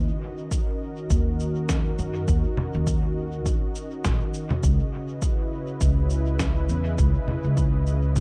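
A swung 102 BPM groove in 4/4 anchors this spacious, hazy ambient dub excerpt, where a woody, up-front pizzicato upright bass with tube saturation plays beneath a mellow, detuned sawtooth pad with chorus holding sustained D#m7 and C#m7 chords from the start, joined at 0.5 seconds by a punchy, overdriven electronic kick and muffled, tape-warm electronic cabasa, snare and congas soaked in dub echo, all within a dark, dry production.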